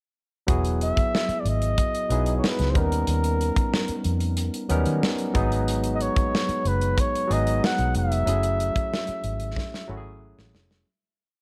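A small room holds this romantic, lush 1970s-style soul verse in E major at 92 BPM, where a barky tine electric piano pushes drop-2 chords with grace notes over a dark, foam-muted fingered bass playing a warm melodic line with ghost and chromatic approach notes, a punchy modern studio drum kit sets a smooth mid-tempo groove, and a breathy, close-miked flugelhorn with light vibrato and analog delay sings motif-based jazz phrases through chords from Emaj9 to F#m9 until a fade-out from 8.3 seconds and a drum fill at 9.6 seconds.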